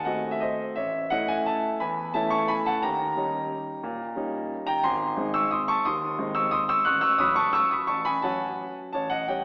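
Rubato pulls the three-beat lilt of this classical piano waltz out of shape, so the beats fall unevenly around a tempo of 176 BPM. The mood is bittersweet and wistful, carried entirely by a solo concert grand piano that sounds warm and up front, with a deep bass, an open character and long sustain, ranging from G#1 up to F#6. The harmony opens on a tense G#7b9, settles onto A, moves through D#7 to G# near 4.9 seconds, and comes to rest on F#m/A. A wet reverb, like a large scoring stage, surrounds the piano, while an AM radio coloring gives the whole sound a narrow, band-limited quality. Cut from a longer piece, the passage lasts about 9.4 seconds.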